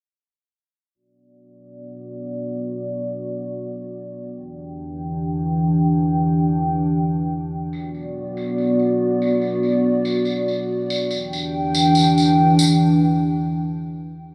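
A dark analog pad sits up front in this hypnotic trip hop excerpt, holding sustained chords from 0.9 seconds that move between B minor and E minor seventh at a slow 71 BPM in straight 4/4. The pad is deep and moody, built from detuned sawtooth, square and triangle waves with a sub octave and a wave-folded edge, and its slow attack, long release and chorus let each chord bloom and linger. A filter sweep runs across the pad for the whole passage, keeping its tone shifting. An acoustic tambourine joins at 7.7 seconds, sounding distant, as if played in a large room, and drops out at 12.8 seconds, where a short break leaves the pad alone. The mix is bathed in a lush hall reverb with a long tail and darkened by a low-pass filter, with tuning set slightly below standard pitch at A4 = 438 Hz.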